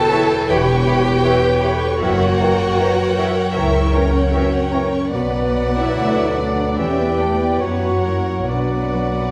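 A slow rubato pulse in 4/4, drifting between 67 and 80 BPM, carries this yearning, solemn romantic movement for symphony orchestra in B minor, cut from a longer piece. Two violin sections share the top: a rich, close chamber group sings the melody with expressive vibrato, while a lush, focused studio section with a smooth top traces a higher second line. Beneath them, a background viola section fills in accompaniment and a dark, woody cello section holds the bass. A double bass section with a soft attack joins up front at 0.5 s. Mellow French horns sustain chords in the background, a bright, ringing concert harp adds fingerpicked arpeggios, and from 0.1 s a pure, hollow silver flute, an oboe and a very quiet clarinet trace second lines while a very quiet bassoon adds accompaniment. The harmony moves from C#m7b5/E through F#7b9 to Bm, Em7 and F# before settling on Bm, set in a dark, wet scoring-stage reverb.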